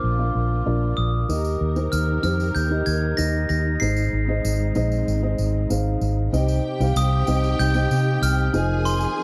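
Earnest and driving, this short excerpt of piano-driven pop in C minor moves at 95 BPM in a straight 4/4, with a sparkling glockenspiel melody carrying a slapback echo over a felt-muted upright piano, a round, punchy electric bass up front, dark, woody strings sustaining chords in the background, a jingly tambourine entering at 1.3 seconds and a rich, focused violin section adding a second line from 6.3 seconds, all captured in a dry, close 1970s-style studio sound.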